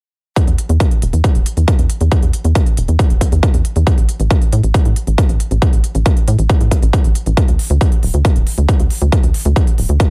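A dry excerpt of euphoric, soaring uplifting trance at 137 BPM in straight 4/4, where a punchy, tape-warm electronic kick sits up front with faint crisp hi-hats, both re-recorded in a large room, while a dark, driving sequencer bass built from sawtooth and square waves with ring modulation and a fast-attack filter pluck pumps against the sidechain between D1 and A2 from 0.5 to 10.0 seconds.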